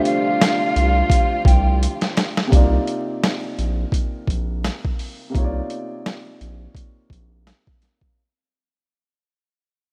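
A dark, mellow baby grand piano and a bowed studio string section open this gritty boom-bap hip-hop excerpt in C dorian at 85 BPM, with a breathy, hollow jazz flute adding a brief vibrato melody through delay before a drum fill at 1.8 seconds. The sampler-style kit, compressed and pitched down with a thumpy kick and 12-bit grit, sits up front beside a round, deep analog bass entering at 0.8 seconds, while the piano carries cassette-tape coloring. Once the strings stop at 2.5 seconds, the harmony moves from Dm7 to Cm11 and the piece fades out over a rough home-demo mix with vinyl crackle and light reverb.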